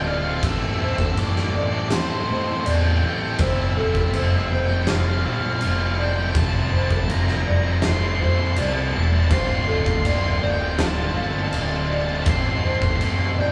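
A boomy, up-front low-tuned drum kit with a fat snare, dark cymbals and a saturated, pumping room sound plays from 0.4 to 13.2 seconds in this cinematic, cathartic post-rock excerpt at 81 BPM in straight 4/4, beneath a fuzzy octave-fuzz lead guitar melody, while a bright cranked stack guitar with spring reverb and a sludgy overdriven guitar play riffs in the background, a mellow felt-muted upright piano adds soft, intimate arpeggios, and a fingered electric bass carries the Am7, Fmaj7 and Dm7 changes, the band playing live in one room with a wet studio reverb.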